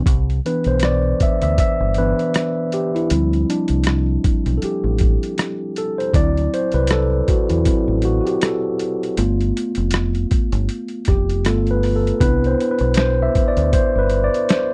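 R&B and neo-soul groove at 79 BPM in 4/4, with a 56% swing on the sixteenths giving it a relaxed, soulful sway in C major. A mellow tine electric piano carries the lead as a solo from 0.1 to 14.7 seconds, its clean tone heard through built-in speakers and moving through Cmaj9, Dm11, D9 and G9 before settling back on Cmaj9 near 12.2 seconds. Underneath, a deep dub fingered electric bass plays a dark, round line in the low register, direct and amped and sitting up front. A boom bap sampler-style kit supplies hi-hat, rim click, a medium-tuned snare and a thumpy kick, sounding compressed, pitched down, gritty and tape-warm, as if re-recorded in a small room. The mix is dry and close in the manner of a 1970s studio, with each part forward and present in this smooth fragment of a longer piece.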